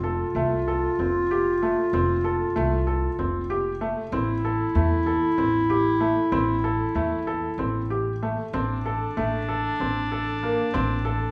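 A clarinet with a warm, classical tone sits up front in this short, restless and pensive piece of contemporary chamber music. It carries a second line in a narrow middle range throughout. Alongside it, a felt-muted upright piano plays arpeggios with a soft, mellow, intimate quality, short sustain and audible action noise that keeps it close to the listener. An upright bass plays pizzicato with a woody, acoustic sound and steel-string bite, anchoring the low end. The music moves in an uneven 7/8 meter with a straight feel, shifting from F to A minor at 4.1 seconds and settling on a bare D5/A at 8.5 seconds. A reverberant recital-hall ambience surrounds the trio, giving it the air of a church or concert hall in this brief excerpt from a longer work.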